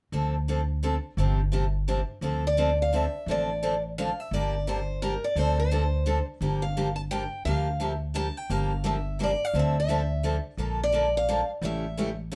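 A swinging 3/4 pulse at 172 BPM, with a gentle swing on the eighth notes, drives this fiery stretch of acoustic string swing in D minor, cut from a longer piece. From the first moment an upright bass and a picked steel-string acoustic guitar play together: the bass is pizzicato on gut strings, woody, dark and thumpy, and sits up front, while the accompanying guitar has a boxy parlour tone with fresh strings. At 2.5 seconds a second picked steel-string guitar enters with the melody, carrying a bright concert-guitar voice in a higher register and sitting slightly louder than the accompaniment. The harmony moves through minor-seventh and ninth chords, turning on Gm7 and Dm9, then reaching Bbmaj7 near 10.6 seconds before closing on A7 at 11.6 seconds. A light reverb gives the close, lively trio a touch of space.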